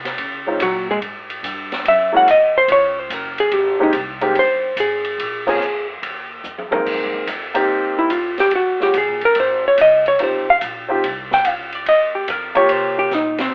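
Small-group swing and bop jazz with a warm, sophisticated mood, cut from a longer piece, in which a dark, clean hollow-body jazz guitar carries the melody up front over intimate grand piano accompaniment with audible action noise, a woody, growly pizzicato upright bass and an open jazz kit with dark cymbals, a high-tuned snare and a boomy kick, all heard from further back in a modest club room through a telephone-like sound, with band accents at 5.4 and 13.3 seconds and a drum fill at 6.4 seconds leading into the second section.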